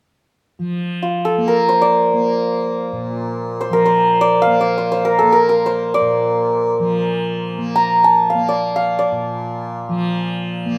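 A bright, hammered santur sits up front, its ringing melody entering at 1.0 seconds over a softly plucked, buzzing tanpura drone that begins at 0.6 seconds. This short cut from a longer Indian classical piece unfolds in free time in raga hamsadhwani on Bb, with a meditative, radiant mood. The two players share one room, and a moderate studio reverb lends the sound a gentle spaciousness.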